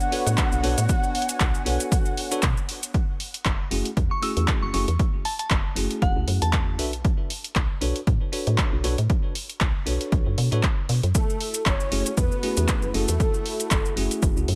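A swung 16th-note groove at 117 BPM drives this smooth, hypnotic deep house excerpt in F# minor, where a punchy, overdriven electronic kick sits up front beside an overdriven kit of handclaps and hi-hat, a round, woody FM bass and bright, bell-like tine electric piano stabs pump with sidechain, a detuned sawtooth pad with chorus rests in the background, a breathy flute-like lead with dub echo and grainy, close maracas appear at the start and return at 11.1 seconds, and a crystalline, warbling synth bell with 12-bit sampler grit and tape echo sings briefly from 4.1 seconds.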